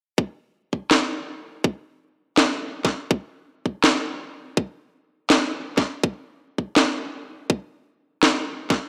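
An electronic kick drum opens the excerpt at 0.2 s: tight, layered and up front, with a high-pass filter trimming both the kick and the small room it was re-recorded in. At 0.9 s a cracking electronic snare joins, also layered and sitting close, carrying the same small-room character. Together the two drums play half-time drum and bass at 164 BPM in 4/4, with a 58% swing on the sixteenths giving the groove a slight lean. A moderate, lush hall reverb with a 1.6 s tail surrounds them, creating a spacious backdrop around the tight, cracking hits. The mood is tense and spacious, and both drums carry on until 8.8 s of this short cut from a longer piece.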